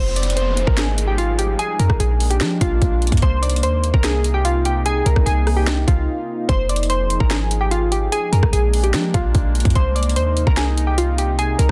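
A dense, heavily limited and dry-sounding clip of menacing, hard-hitting trap at 147 BPM in a half-time feel and C minor, where glassy, wave-folded digital keys with chorus and digital delay carry the melody over a warbling, detuned lo-fi pad, a deep, boomy 808-style bass, an up-front trap kit of hard-clipped kick, sharp snare, rim click and metallic hi-hats entering at 0.2 seconds, and a background downlifter that runs until 3.2 seconds, all cycling through Fm7, Bb7 and Cm7 with a brief break at 6.1 seconds.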